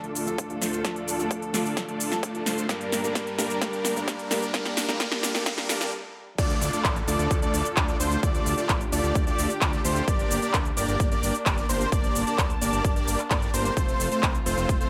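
Light reverb and a high-pass filter give this festival progressive house excerpt a polished finish, and it plays as a section cut from a longer piece at 130 BPM in D minor, with an anthemic, emotional mood. It opens with a build-up: a soft felt-muted upright piano with audible action noise, vintage 12-bit sampler grit and tape echo plays accompaniment, while dark con sordino strings hold veiled chords in the background and a huge, detuned supersaw riff plays through a low-pass filter sweep. A punchy, overdriven electronic kick and an up-front big-room kit with crisp hats, handclaps, shaker, snare and crash run through a drum fill as a riser and downlifter hover behind, all over Dm and Gm chords. The piano drops out at 5.9 seconds for a brief stop, and at 6.4 seconds the drop arrives with a fat, saturated analog bass and a nasal, warbling unison lead playing arpeggios. Sidechain pumping makes the piano, strings, supersaw, lead and bass breathe against the kick, and the progression moves from Dm to Gm and on to F to close.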